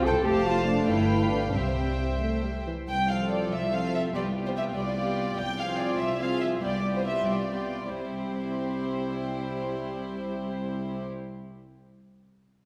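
A quick, graceful and cheerful classical-period movement for string orchestra in C major and 6/8 at 85-98 BPM, cut from a longer piece, where the up-front violins carry a pure, floating melody over a richer, more distant second violin line, dark, intimate violas and cellos with light vibrato, and a dark double bass section that drops out at 2.7 s, all bowed sul tasto with soft attacks, heard from further back on a scoring stage with a wet 1.8-second reverb, the rubato pulse slowing between 4.8 and 8.0 s as the harmony shifts to a minor-tinged F over C before settling on C.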